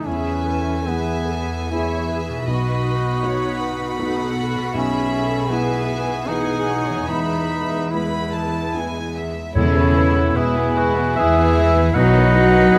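Moving and hopeful, this cinematic film-score excerpt for orchestra unfolds in a rubato three-beat lilt, cut from a longer piece. A duduk carries the melody with vibrato and scooped, folk-style notes until 9.1 seconds, over a soft, felt-muted upright piano whose action noise sits intimately in the background, a very quiet ringing harp playing fingerpicked arpeggios, and a close, sul tasto cello section holding the bass. Violins add a floating second line while a dark, woody viola section fills in lushly behind them. At 9.5 seconds a hollow silver flute begins weaving a second line, and at 9.6 seconds the orchestra blooms: a distant, very quiet violin section takes up the melody, a smooth-topped clarinet and a roomy oboe add second lines of their own, a tight French horn section sustains chords, and a double bass section deepens the bass. Timpani struck with hard mallets give a brief, articulate, dry accent as this passage begins. 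Close, detailed microphones capture the players within a moderate scoring-stage reverb, keeping the sound both intimate and spacious.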